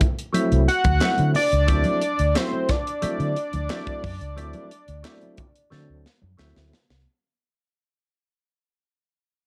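A fat, detuned analog lead carries the melody up front, its sawtooth and square-wave tone thickened by a sub octave, ring modulation, chorus and vibrato as it enters at 0.7 seconds. This is a strutting, playful funk cut in D mixolydian at 89 BPM in a straight 4/4, opening on a D9 chord. A round, foam-muted electric bass sits up front with a dark, amped tone, while a tight, acoustic drum kit with a medium-tuned snare drives the groove on hi-hat, kick and snare. A mellow, lightly overdriven tonewheel organ adds percussive stabs with key click and chorus vibrato, and bright, damped congas sit in the background alongside very quiet, hollow group handclaps. The production is dark and warm, with light reverb and small room ambience, and this excerpt fades out across its length as a drum fill arrives at 5.7 seconds.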